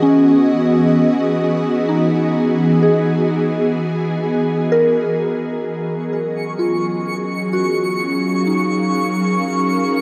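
An up-front, ethereal pad of detuned, airy unison tones holds slow-attack sustained chords from 0.0 s, moving from Emaj7 to Gbmaj7 at 5.6 s, washed in ensemble chorus and shimmer reverb, while a soft, pure FM bell traces mellow arpeggios through chorus, phaser and delay. This luminous ambient passage in a slow 3/4 at 64 BPM sits in a huge, wet reverberant space, cut from a longer piece. At 6.4 s a twinkling granular texture enters high and up front, adding sparkling octave-up shimmer.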